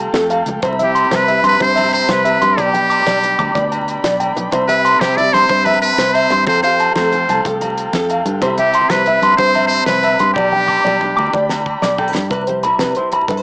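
A home cassette recording with a small-speaker sound and modest small-room reverb captures this sunny highlife guitar band passage in 12/8, cut from a longer piece. An up-front trumpet with a buzzy, brilliant metal-mute tone plays the solo melody over twangy, slightly broken-up electric guitar arpeggios with tape echo, fingerpicked nylon-string guitar in the background, and heavy-vibrato chords from a reedy combo organ that stops at 12.3 seconds. Round, dark fingered bass and a dry, damped 70s drum kit with a fat snare sit underneath, the drums playing a fill from 10.4 seconds, while very quiet hard-handed congas and distant ringing agogo bells add percussion.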